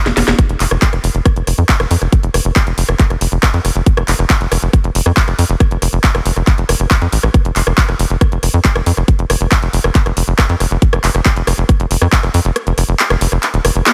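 A straight, driving groove opens with a drum fill at 0.1 seconds in this alien-sounding psychedelic trance excerpt, where a tight, tape-warm electronic kick sits up front beside an overdriven electronic kit of cracking snare, bright hi-hats, handclaps and rim clicks, while a punchy, nasal sequencer bass of sawtooth and square waves with a plucky filter and fast, decaying attack keeps evolving underneath, and the kick drops out at 12.6 seconds, all in a lightly reverberant space.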